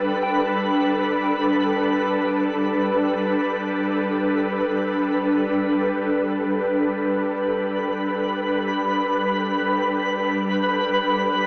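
A luminous, weightless ambient passage in free time and G major, cut from a longer piece, opens with an ethereal, airy pad of detuned, chorused sustained chords up front, a soft, pure FM bell in the background tracing phased, dub-echoed arpeggios that fade away by 6.2 s, and a twinkling granular texture with octave-up shimmer also fading over that span, while the harmony moves from Dsus2/G to G and the echo-heavy mix sits in a wet echo-chamber reverb with an AM-radio sound.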